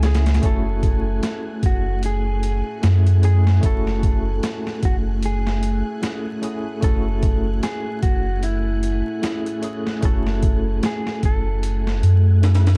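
Dark production with vinyl crackle and digital ambience frames this brooding, cinematic trip hop excerpt at 75 BPM, swung on the sixteenths and resting on a single F#m9 chord, where a gritty, overdriven boom bap sampler-style kit with a thumpy kick and high-tuned snare sits up front beside a deep, round dub sub bass, a clean tine electric piano with tremolo provides accompaniment while a vintage, sawtooth-edged string machine of cellos with phaser and ensemble chorus holds sustained chords, and a mellow, fingered electric guitar carries the melody through 12-bit sampler grit and dub echo until 12.4 s.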